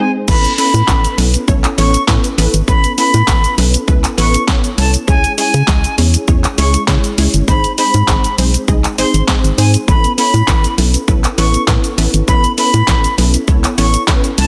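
Dance-pop at 100 BPM, energetic and confident, this cut from a longer piece opens with a brief break of silver concert flute melody with tape echo, sounding pure and distant with vibrato, over a lush, detuned sawtooth unison pluck that pumps with sidechain. At 0.3 seconds the drop arrives as a hollow, dark organ-like FM bass and an up-front house drum kit enter, with punchy kick and snare, bright hats, handclaps, shaker and crash. The harmony moves from Aadd9 through C#m and G# back to Aadd9, all in light reverb with a dense, heavily limited modern master.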